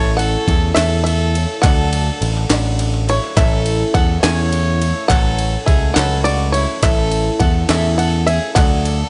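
A twangy, mellow banjo with fingerpicks carries the melody from the start over a nasal, reedy bowed fiddle line touched with plate reverb and digital delay, a shimmering, boxy twelve-string acoustic guitar, a very quiet, woody upright piano, a round, punchy electric bass up front and hollow group handclaps in the background, joined at 0.2 s by a gritty, pitched-up jungle sampler-style drum kit with a thumpy kick, in this uplifting, warm indie folk excerpt in 6/8.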